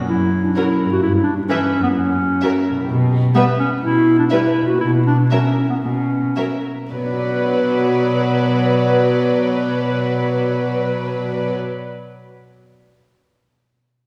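This cinematic cue, cut from a longer piece, feels magical and quirky, with the pulse slowing between 2.0 and 6.9 seconds before a new section takes over. A thumb-plucked concert harp opens with ringing arpeggios. A dark clarinet sits up front in a classical style, carrying a second line over a cello section that supplies an intimate bass with a soft attack. From 0.6 seconds the violin sections join, one playing the melody sul tasto with light vibrato and a smooth top, the other a woody, lush second line set further back. A viola section adds a pure, floating accompaniment, and the whole ensemble blooms in the generous reverb of a church or concert hall.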